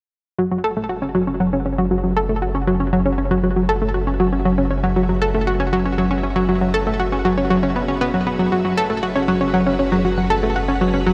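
Hypnotic and expansive, this ambient passage moves at 118 BPM in a straight 4/4, resting on a single F#m7 chord for its whole length. An up-front analog pluck carries a riff between F#3 and A4, its bright, round sawtooth and square-wave tone given a fast attack, short decay, and a sub octave, then spread by chorus and delay. Beneath it, a full string machine ensemble holds lush, vintage sustained chords from G#3 to F#5, fading in from 0.4 s to 11.1 s with a slow attack and ensemble chorus, sitting well back in the mix. A deep sine sub bass sustains F#1 throughout, adding a round low foundation. A huge ambient reverb with a 7.8-second decay bathes the sound, and the clip is cut from a longer piece, ending at 11.1 s.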